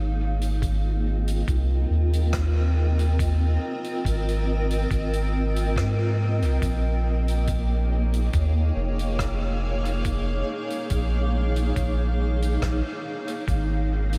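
A straight 4/4 pulse at 70 BPM, carried by a muffled, pitched-down electronic kick in the background from 0.6 s and a faint soft-mallet kit of hi-hat and rim click with dub echo from 0.4 s, anchors this deep, meditative ambient dub excerpt in Bb dorian, where an up-front, round triangle-and-square sub bass sustains beneath a blurred, detuned granular cloud pad that moves through Abmaj7 and Bbm7 chords with a slow attack, a moving notch and built-in reverb, the whole set in a small room with light reverb.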